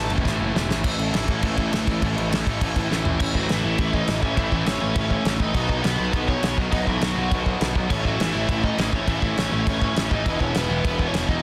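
The recording is dense and heavily limited, with little reverb, so this short cut from a longer punk rock piece hits hard and close. An upfront acoustic drum kit in a small room, with a fat snare and tight kick, rolls in with fills before settling in, its crash, toms and straight beat driving an upbeat, rebellious feel. Underneath, a growly, fuzz-laden picked bass runs throughout, joined by a sludgy overdriven guitar and a tight, bright distorted guitar holding riffs in the background, while a double-tracked overdriven guitar sits very quietly beneath them. At 3.2 seconds a biting overdriven guitar takes up the melody, warm and picked, carrying it to the end as the chords move from A to B, back to A and on to E.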